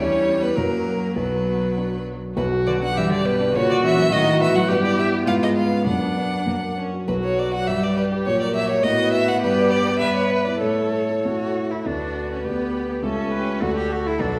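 Restless and urgent, this quick classical-period movement for piano quartet, cut from a longer piece, moves at 102 BPM in 2/4 with a rubato feel, turning from B minor to D major at 9.4 s: an up-front, rich violin sings the melody with a smooth top and vibrato, a focused, bowed cello carries the second line, a clear viola with vibrato and a warm, up-front grand piano supply the accompaniment, and the whole ensemble sits in a wet recital-hall reverb.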